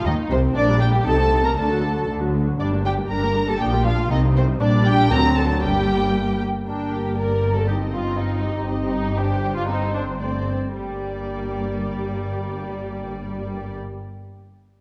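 Muted, veiled violins lead this urgent, dramatic fragment of a quick classical-period string orchestra movement in 2/4, one section carrying the melody while a second, up-front violin line runs beneath it, over distant viola accompaniment, soft-attack cellos in the background and a warm, up-front double bass section, all bowed con sordino in a dark, lush blend on a moderately reverberant scoring stage, with the pace slowing between 8.2 and 10.8 seconds before settling on a G minor chord.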